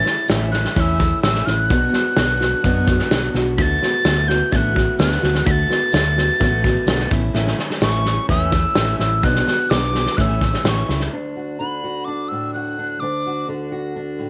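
Indie folk with a hopeful, anthemic lift, this short cut from a longer piece moves at 128 BPM in D major with a small-room, home-cassette character. An airy, chiff-edged tin whistle carries the vibrato melody high over bright picked archtop guitar, a gritty, saturated, up-front drum kit with punchy kick and medium-tuned snare, a dark, round hollow-body bass and a jingly tambourine in the background. At 11.1 seconds the band drops away as a fingerpicked steel-string guitar with fresh strings and audible finger squeak takes over beneath the whistle, which plays on until 13.5 seconds.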